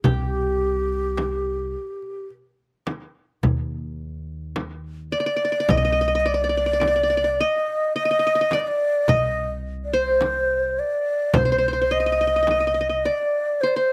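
Longing and melancholic, this Arabic maqam ensemble piece in C minor moves at 106 BPM in a straight 10/8, with a breathy, softly attacked ney carrying the melody up front with vibrato while a bright-edged qanun, played with fingerpicks and given a slapback echo, plays a second line in the same register. A woody, thumpy pizzicato upright bass anchors the low end. A crisp metal-shell darbuka sits in the background behind a close, dry frame drum, all heard in an outdoor recording with light reverb and cut from a longer piece.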